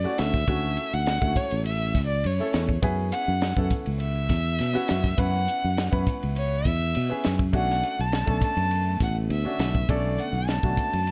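A dark, lightly reverberant production frames this short, funky and bright electric jazz fusion fragment at 102 BPM in a straight 4/4, moving from Dmaj9 through F#7sus4 to Bm7. An up-front, boxy bowed violin with rich vibrato carries the melody through a slapback echo, while a brilliant baby grand piano with plate reverb accompanies, a growly fretless electric bass holds the low end, and a crisp, airy drum kit with a high-tuned snare and punchy kick joins at 0.2 seconds. At 8.4 seconds a very quiet, warbling, detuned tape-like pad adds slow-attack sustained chords with a nostalgic, lo-fi haze.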